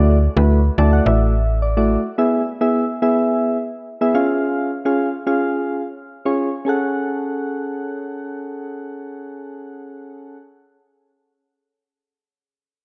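A snappy, metallic FM bass and soft, round electric-piano-like synth keys open this energetic yet bittersweet dance-pop excerpt in F# minor at 107 BPM, with the keys adding a fill from 0.5 seconds and the bass dropping out at 2.0 seconds. The mellow, chorused keys carry on alone through a progression from Dadd9 to E and C#, landing on F#madd9 as a new section begins at 6.7 seconds. A lush hall reverb and a worn cassette-tape sound with warbly pitch drift give the recording a vintage haze.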